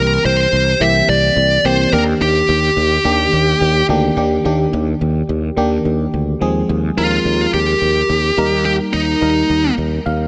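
A dark, distorted high-gain lead guitar, picked up front and trailed by digital delay, carries the melody until 9.7 seconds in this glossy, romantic 1980s-style pop fragment at 107 BPM in Eb major, over a glassy, bell-like FM electric piano with warbling chorus and a bright, growly sustaining fretless bass, the mix set in light digital ambience as the piano adds a brief fill from 9.8 seconds to the cut at 10.3.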